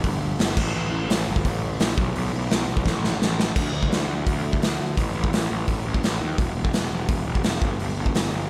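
A raw garage drum kit sits up front, its punchy kick, medium-tuned snare, hi-hat and crash ringing in a bright stone room that pumps, with a saturated, gritty sound and a rolled-off top; a fill at 2.9 seconds leads into the second section. Beside it, an overdriven picked electric bass growls with bright, punchy fuzz in the low register. This rebellious, rowdy punk rock excerpt is dry and straight in 4/4, and the drums drop out at 8.2 seconds while the bass carries on to 8.5 seconds.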